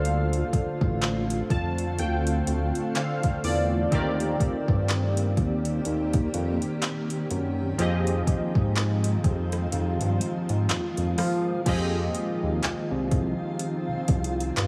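A slow 4/4 groove with swung sixteenths drives this sensual, moody contemporary R&B excerpt. An electronic kit sits up front with a soft kick, metallic hi-hats, handclaps, rim clicks, a crash cymbal and an overdriven edge, and its kick drops out from 9.7 to 11.7 s just before a new section arrives. A fat, detuned sawtooth bass holds the low end while round, warbling vintage keys with chorus and a filter sweep play an early fill over a cloudy, evolving granular pad that drifts through Dm7, Cm7/Eb and Fm7, all in a light reverb.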